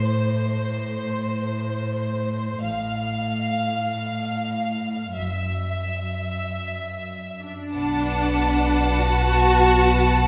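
A clear, up-front violin section carries the melody of this tense, mysterious suspense film cue, its smooth, even bowing shaded with vibrato as it moves between C5 and A5. Beneath it, an intimate cello section holds the bass from the start with light vibrato and soft attacks, joined at 2.6 s by a distant double bass section that adds a deep, rich foundation. The music floats in free time over an A minor chord that shifts to Dadd9/F# and then settles on Bm7. A focused viola section enters at 7.4 s as accompaniment, and at 7.7 s a second violin section adds an expressive, lush countermelody with soft attacks. The strings sit in a reverberant recital hall with a wet tail, and the passage is cut from a longer piece.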